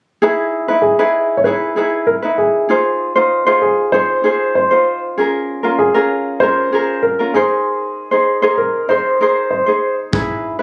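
Acoustic pop in Ab major at 97 BPM, carefree and sunny, this short cut from a longer piece sets a light, thumb-plucked ukulele up front from 0.2 seconds beneath a dark, woody upright piano carrying a mellow, vintage melody over Emaj7, Fm7, Bbm7 and Abadd9 chords, both bathed in plate reverb, before a punchy kick drum lands at 10.1 seconds, the recording made on a phone in the room with moderate studio reverb.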